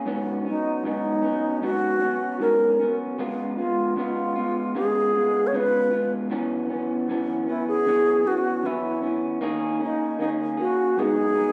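An alto flute carries a pure, vibrato-laden melody with tongued notes and lifted highs, entering at 0.5 seconds over a dark, slightly broken-up fingered electric guitar through a small old amp with warbly pitch drift, in this hazy, wistful indie pop fragment at 77 BPM in G# minor, played live in one room and bathed in a large studio reverb as the chords move from G#m7 through C#7, F#7sus4 and D#7sus4.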